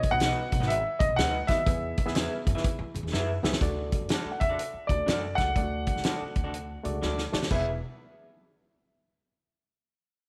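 Uptempo 1960s-style soul in E major at 123 BPM with a swung 4/4 feel, joyful and warm, moving over B, E and D chords in a short passage cut from a longer piece. An up-front grand piano carries the melody, backed by a reedy, barky, lightly overdriven electric piano and twangy, slightly broken-up, lo-fi guitar stabs. A natural small-room drum kit with a fat snare and punchy kick plays fills at 3.1 and 7.0 seconds, alongside very quiet, damped vintage congas and a woody, growly pizzicato upright bass, all in light reverb.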